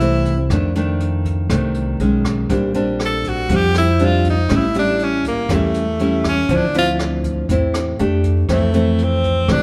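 Breezy and sunny, this short bossa nova excerpt moves at 120 BPM in a straight 4/4 feel, centered in F major. A breathy tenor saxophone carries the melody up front, its bright subtone tone with a soft attack and light vibrato giving a jazz-style solo that runs from the start to 8.5 seconds. A fingerpicked nylon-string guitar sits just as close, its classical sound supplying the accompaniment through chords such as Fmaj7, Bb69, A7 and Dm9. Beneath them, a woody pizzicato upright bass plays with steel strings, while a jazz brush drum kit with a boomy kick, hi-hat and rim click sits further down, its top rolled off. A moderate plate reverb places the ensemble a little further back in the room, and the piece shifts into a new section at 8.5 seconds, landing back on Fmaj7 before it is cut off.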